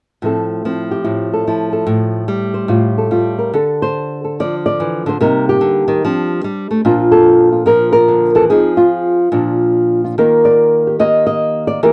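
Dry and close, this 1970s-style studio recording places a lone flamenco guitar up front, its dark, thumb-plucked acoustic tone heard with little reverb around it. It is a solo jazz piece in 4/4 at 145 BPM, with swung eighth notes and a rubato feel, and the instrument is tuned to A4 = 441 Hz. The mood is cool and smoky. The guitar ranges from A2 up to Eb5, opening on colorful harmonies such as Fmaj9/A and G7sus2/A before a new section begins at 3.5 seconds. From there the chords move through Dm9, Cm7, F69 and Bb, then darken toward Fm7 and settle on Ebmaj9 near 10.2 seconds. The passage is cut from a longer piece and ends at 11.9 seconds.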